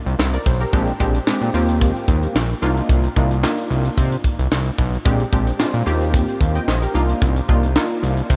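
Slick and danceable, this early-eighties boogie funk groove in C minor moves at 111 BPM in a straight 4/4, cut from a longer piece. A tight funk drum kit with a punchy kick, high-tuned snare, hi-hat and handclaps sits up front beside a fat, detuned sawtooth analog bass with a filter pluck, while a mellow, chorused polysynth comp enters at 0.2 seconds on chords such as Bb13, Eb6 and Cm11. A huge ambient reverb soaks the mix in a dreamy haze.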